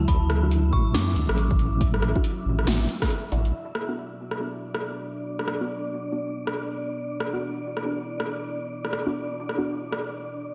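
A dreamy, reverb-soaked hall ambience frames this cavernous, meditative deep dubstep excerpt at 139 BPM in B minor with a swung half-time feel, where a compressed sawtooth wobble bass sits up front beneath a moody detuned analog pad and a breathy, wind-like tuned noise texture, while an eerie, inharmonic FM synth bell with dub echo and an overdriven electronic kick both fall away at 3.1 seconds and the bass stops at 3.5 seconds as the Dadd9 chord gives way to Bm, a muted, filter-swept dub chord stab with phaser and echo lingers in the background, and an overdriven house drum kit with punchy snare, metallic hats and rim click stays prominent until 10.0 seconds.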